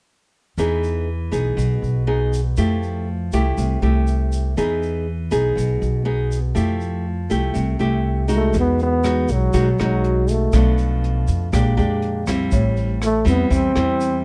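A straight 4/4 bossa nova groove at 121 BPM sets a relaxed, sunny mood in this dry, closely miked excerpt from a longer piece, where a small, fingerpicked nylon-string guitar, a woody pizzicato upright bass and a grainy, bright, vintage-sounding tube shaker sway between Emaj7 and Fmaj9 until a mellow, breathy trombone takes an up-front jazz solo full of scooped notes at 8.4 s, joined at 8.5 s by a dark, smooth brushed drum kit with a boomy kick and rim clicks sitting in the background as the harmony moves through Emaj9, Bm7b5, A#13 and Am7.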